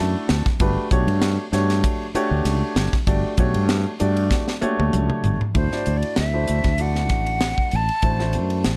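Dry and dark, this short cut from a longer electric jazz fusion piece moves at 97 BPM in a funky, soaring 4/4 with a light sixteenth-note swing, as a long-sustaining baby grand piano and a growly fretless electric bass sit up front over Dadd9 and Gmaj7sus2 harmony alongside a crisp, airy drum kit with a punchy kick and high-tuned snare, whose fill at 4.3 seconds leads into a D mixolydian passage on D9 where a breathy, bright flute with vibrato, chiff and tape echo carries the melody from 5.6 seconds.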